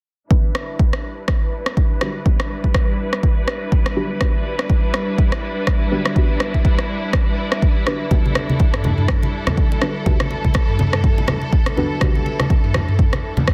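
A dense, heavily limited modern mix with light digital ambience carries this hypnotic, earthy afro house cut from a longer piece, where a punchy, up-front electronic kick anchors a deep house drum kit of rim clicks and toms with softly clipped snare. A distant, lush string section holds sustained Em7 chords with vibrato under a low-pass filter sweep, while deep, mellow chord stabs with detuned sub-octave weight, phaser, chorus, digital delay and vintage 12-bit grit pump alongside the strings. At 8.1 seconds, bright, low-tuned congas with a saturated edge join the groove.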